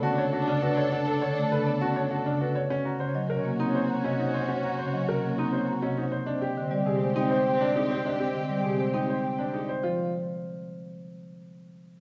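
Classical minimalist pattern music in a straight 3/4, hypnotic and meditative, cut from a longer piece and set in a wet recital hall with a dark production. A round, soft-mallet marimba carries the melody over an up-front marimba accompaniment played with medium hard mallets, while a brilliant grand piano spins arpeggios and a rich, bowed string section holds vibrato-laden chords until 9.6 seconds. A mellow soprano saxophone with a smooth top adds a quiet second line in the background, as the harmony moves from Bm7 through Ebm7 and Abmaj7 before settling on F5 at 9.8 seconds.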